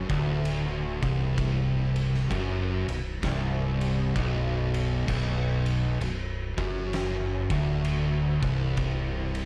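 A slow, swung 4/4 pulse at 65 BPM drives this hypnotic, ominous stoner and doom metal excerpt, cut from a longer piece and sitting on a single B minor chord in B phrygian for its 9.5 seconds. A crunchy overdriven guitar, bright and double-tracked, plays the picked riff from the first moment, while two thick fuzz guitars, dark and distorted, play the riff alongside it from the background in the same low register. Beneath them a fingered electric bass, growly and punchy with a touch of overdrive, holds down the bottom an octave lower. An oversized low-tuned drum kit joins at 0.1 seconds with a fat snare, punchy kick, crash and ride, its sound saturated and gritty in a bright stone room. The production is dark with light reverb, giving the heavy layers a brooding, massive weight.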